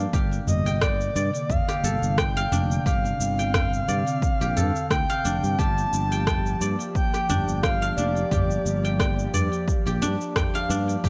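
Hypnotic and earthy, this organic downtempo excerpt with a gentle 16th-note swing sets a silvery, ringing guzheng playing delayed arpeggios over an airy, breathy pad and a growly fretless electric bass, both carrying chorus and sidechain pumping under the chords Bbadd9 and Gm7. A punchy, overdriven electronic kick and a tape-warm electronic kit of rim click, shaker and toms drive the groove. From 0.5 to 9.3 seconds a breathy, flute-like synth lead with vibrato and a vintage cassette warble floats above, all set in light reverb.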